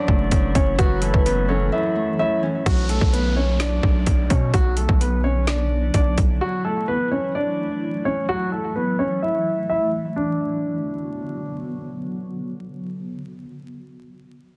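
A dense, heavily limited, dry mix dusted with vinyl crackle frames this eerie, hard-hitting half-time trap fragment, where a dark, intimate grand piano melody with audible action noise, low-pass filtering and delay rides over a ringing, fingerpicked Celtic harp and a cloudy, blurred granular pad. Meanwhile an aggressive distorted 808 bass and an up-front trap kit with hard-clipped kick, woody snare and metallic hats hit hard, the kit until 6.3 seconds and the bass until 6.4. A velvety, chorused synth lead slips in briefly at 0.8 seconds, and an electronic downlifter enters at 2.7 seconds as a filter sweep begins.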